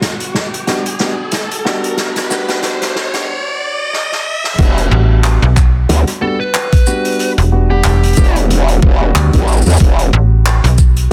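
A growling, wobbling bass with chorus and tube saturation takes over at the drop at 4.6 seconds in this swaggering, funky glitch hop excerpt in E minor at 92 BPM, joined by a snappy, metallic FM bass and an overdriven, knocking electronic kick up front. Before that, a build-up pairs an electronic riser and a filter sweep on dark, mellow grand piano stabs with sidechain pumping and tape echo, while a distant, roomy soft-mallet kit of snare, rim clicks, handclaps, hi-hat, shaker and crash plays fills, its snare softly clipped. A dark fuzz lead guitar with tape echo surfaces briefly from 6.2 to 8.4 seconds over the Em7 that replaced the opening Gmaj7 at the drop, all within a dense, heavily limited modern master.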